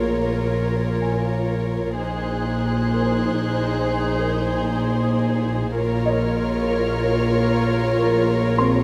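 A moderate scoring-stage reverb surrounds this brief cinematic passage in Bb minor, a tense, ominous cut from a longer piece moving at 95 BPM in 3/4 with a straight feel. Two symphonic violin sections carry the melody and a second line with a soft-attack, floating, pure sul tasto tone, while a dark, woody viola section adds lush accompaniment with vibrato. Cello and double bass sections play a low Bb in warm bowed tones, joined by an eerie, nasal, metallic FM drone with chorus and its own reverb sitting in the background. A mellow, boxy grand piano adds very quiet texture, and at 2.0 s an intimate chamber violin section enters high above with light vibrato. The harmony moves from Bbm to Abadd9 over Bb and returns to Bbm at 5.7 s.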